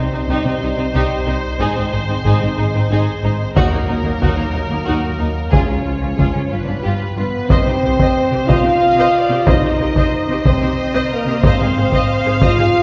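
Relentless and epic, this cinematic orchestral film-score passage moves at 61 BPM in 6/8, shifting from C phrygian to C minor at 7.5 s, with a lush, vibrato-laden violin section carrying the melody over a focused second violin line and an intense viola accompaniment, while a mellow, distant French horn section sustains chords, soft-edged cellos and smooth double basses hold the bass in the background, and hard-stick taiko drums with a band-limited, vintage sound enter at 3.6 s, the whole set in a wet concert hall heard from further back.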